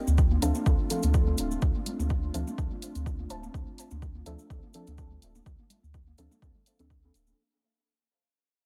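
Dub techno with a hypnotic, nocturnal mood, this short fading excerpt sets a punchy, up-front electronic kick and dark hi-hats over a round sine sub bass, with breathy chorused pad chords pumping under sidechain, and soft chord stabs and a dusty, warbling lo-fi pluck riff that pump as well and trail dub echo, while grainy cabasa and background electronic toms and congas fill out an echo-heavy digital ambience.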